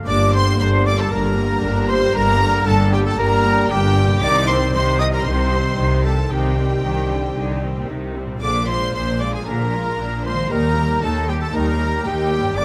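In straight 4/4 at 116 BPM, this swashbuckling, determined cinematic cue in G minor opens at 0.0 s with very quiet, ringing harp arpeggios, and at 0.1 s a lush violin section carries the vibrato melody over Gm, Cm, Bb7 and Eb, joined by an airy, hollow flute, a more expressive chamber violin line and a distant clarinet as background second lines, smooth violas in accompaniment, faint mellow horn and trombone sustained chords, soft clear trumpet stabs, and a bass foundation of rich, up-front double basses and background cellos, all set in moderate scoring-stage reverb.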